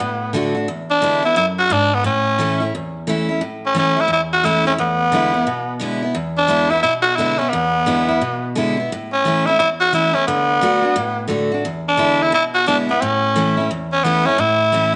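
A swung rock groove at 175 BPM in 4/4, with a 63% lilt on the eighth notes, drives this short, retro and rowdy cut from a longer piece in A major, tuned slightly flat to A4 = 436 Hz. A raspy tenor saxophone carries the melody up front from the very start, its gritty, edgy tone shaded with vibrato as it plays a pop-style solo between B3 and F#4. Beside it, a picked steel-string acoustic guitar on a dreadnought body supplies bright, full-bodied accompaniment from E2 to F#4, with finger squeak audible on the strings. The chords cycle through D, E7 and A, with the opening phrase giving way to a repeat of the same section at 3.4 seconds. A moderate echo chamber reverb and a small room ambience surround the pair, and the top end rolls off above 10.6 kHz, lending the sound a vintage cast.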